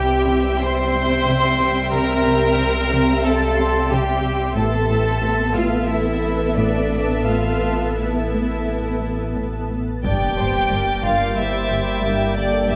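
Sul tasto violins carry an ominous, uneasy melody in this suspense film-score excerpt, joined by a second violin line and a high violin texture, with dusky violas, a cello riff, a background cello bass line, double basses and a clean sine sub drone underneath, a blurred, evolving granular pad and a ringing harp in the distance, and, at 10.0 seconds, a huge impact arrives as shadowy French horns enter on sustained chords, all in a moderate scoring-stage reverb.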